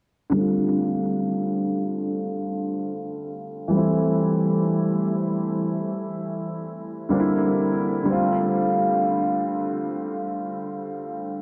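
Played in free time, this brief R&B fragment in F major drifts with a romantic, dreamy mood, cut from a longer piece. A lone concert grand piano carries everything from 0.3 to 11.4 seconds, sitting in the range from D3 to F4 and placed up front with an intimate, natural tone, deep bass, long sustain and audible action noise. Subtle chorus, delay and a low-pass filter color the piano, and a filter sweep runs across its whole span. The harmony moves from F6 to Am7 at 3.7 seconds, then to C9 at 7.1 seconds before settling back on F6. A huge ambient reverb with a 7.5-second decay soaks the mix, giving it a hazy, floating quality.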